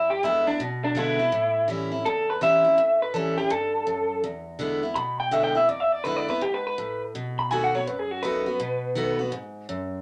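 A retro, rollicking rock passage cut from a longer piece opens with an electric guitar through a small old amp taking the melody, its tone slightly broken-up, lo-fi and compressed, up front over a swinging 4/4 feel. From the same moment, a picked steel-string acoustic guitar, full-bodied with audible finger squeak, accompanies through E7, A7 and B7 chords, and the electric solo stops at 9.3 seconds while the acoustic rings on to 10.0 seconds. The pair sits in a wet small room.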